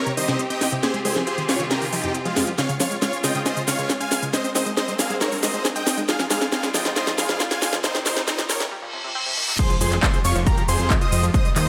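A lush hall reverb gives this uplifting trance excerpt a spacious sheen, with overdriven techno drums pressed up front: a cracking snare, smooth hats, handclaps, shaker, ride and crash. Over a steady straight pulse, a huge, airy supersaw lead carries a euphoric yet bittersweet melody, while a nasal, punchy unison pluck spins filter-swept arpeggios through digital delay. Underneath, a fat, detuned analog bass and a clear, focused string section holding sustained chords sit in the background, and these parts breathe with sidechain pumping. The opening build-up moves through minor-leaning chords with added ninths, with a drum fill and a sweeping filter, then a reverse cymbal from 8.7 seconds, backed by very quiet risers and effects. At 9.6 seconds the drop lands on an impact, bringing in a heavy overdriven electronic kick and a catchy, mellow plucky lead that rides high above the rest with vibrato.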